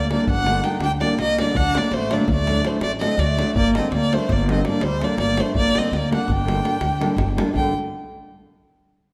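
A dark, woody violin leads this restless, fiery Balkan wedding-band excerpt, played bowed by a single player with vibrato and placed up front, carrying the melody between C5 and G5. Beneath it, a distant, roomy duduk adds a second line in folk style, its vibrato and scooped notes sitting low from D3 to Eb4. A thumpy upright bass with gut strings is plucked pizzicato, while a thumb-plucked flamenco guitar supplies acoustic accompaniment. A deep davul, compressed and saturated, sits in the background. The music moves in a brisk 11/8 at 330 BPM counted in eighths, in G harmonic minor tuned to A4 = 435 Hz, shifting from Gm to D at 1.6 seconds and back to Gm at 3.6 seconds, all within a recital hall reverb.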